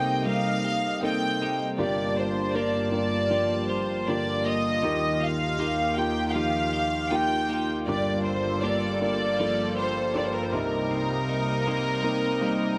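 Pop ballad with an emotional, longing mood, cut from a longer piece, in which an up-front violin section carries the melody with a soft, floating, bowed tone, an intimate concert grand with audible action noise and deep bass plays the accompaniment, a bright twelve-string electric guitar picks twangy arpeggios in the background, and an airy, detuned sawtooth pad with chorus holds evolving sustained chords, set in light reverb with a dark, warm production.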